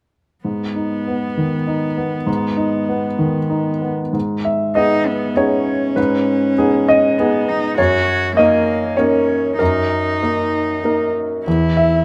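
Neoclassical piano and strings in G# minor, reflective and fragile, moving at a rubato 98 BPM in 3/4, with a clear, intimate grand piano carrying the accompaniment up front, its action noise audible, alongside a rich, smoothly bowed solo cello with vibrato on the second line, both sounding from 0.4 seconds under light reverb as the harmony shifts from G#m to D#m7/F# at 7.8 seconds before falling away at 11.5 seconds in this fragment cut from a longer piece.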